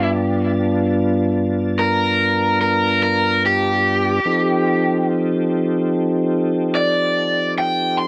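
Swaggering and gritty, this short slow blues cut in 12/8 at 48 BPM moves from G7 to F7 at 4.2 seconds, tuned a touch flat of standard pitch. An overdriven, picked electric guitar sits up front with the melody and a tape echo trailing its notes, while a smooth, clean tonewheel organ holds sustained chords, colored by chorus vibrato and a slow rotary speaker. The sound is dry and close, like a 1970s studio recording, with just a light reverb.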